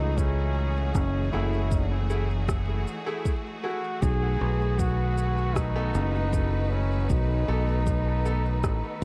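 This ambient dub piece moves at a relaxed 78 BPM in a straight 4/4, its soft electronic kick and produced shaker and rim click entering at 0.2 s, with dub echo trailing the shaker and rim. Underneath, a fingered electric bass sits up front with a growly, punchy tone, anchoring the hazy, deep mood across chords of F#m9 and B7. A bright solo trombone carries the melody with classical vibrato, roughened by vintage 12-bit sampler grit and thrown into dub echo, while a lush bowed string section holds intense sustained chords alongside it. From 1.3 s a woody, brilliant upright piano adds stabs with long sustain, set in the background and echoing into the space. Light studio reverb and a layer of vinyl crackle wrap the sound, and this short cut from a longer piece ends at 9.0 s.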